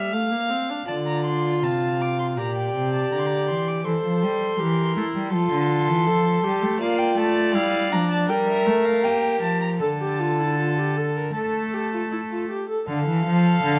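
A dark, warm production places this string quartet in a moderate recital hall, with reverb lingering about 1.9 seconds. It is a contemplative yet driving baroque-style fugue at 80 BPM in 4/4, cut from a longer piece and settling into D minor from 6.8 s. Two bowed violins with period-style gut strings open the piece together: the first carries the melody high above with a reedy edge, and the second adds a rich second line colored by light vibrato. Beneath them the viola supplies accompaniment, while the cello enters at 0.9 s with a nasal, up-front bass line. The harmony moves from D minor through G minor, C, F major seventh and B-flat before returning to D minor, and the viola drops out at 12.9 s as the other three play on to the end.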